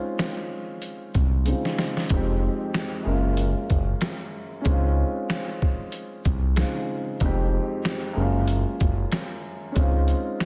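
A smooth, gliding synth bass of sawtooth and triangle tones, with vibrato and portamento, stands out in this reflective, moody boom-bap hip-hop fragment at 94 BPM with a swung 16th feel, set over a muffled, pitched-down sampler-style drum kit with a thumpy kick, medium-tuned snare, hi-hat and a fill at 1.5 seconds, and a dark, intimate, filtered vintage grand piano with audible action noise cycling through Dbmaj7, Fm9 and Gbmaj9, all in light reverb.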